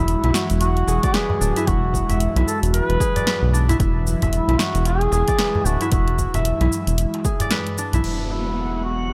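This earthy, peaceful organic downtempo excerpt opens on an Eadd9 chord in E mixolydian, with a mellow, distant duduk singing a folk-style solo melody full of vibrato and scooped notes, set over ringing fingerpicked concert harp arpeggios, both carrying digital delay, while an airy, breathy pad sits in the background with chorus, phaser and sidechain pumping. At 113 BPM with a swung sixteenth-note feel, a round, dark analog bass sits up front and pumps with the sidechain, joined by a deep house kit with a punchy snare, cabasa, hi-hat and crash, a crisp metal-shell darbuka heard distantly in a large room, and an overdriven electronic kick from 1.0 s. At 8.0 s the music shifts into a new section as an electronic downlifter falls in, and a glassy, drifting harmonics texture with chorus and reverb surfaces faintly at 8.5 s, all in a light reverb.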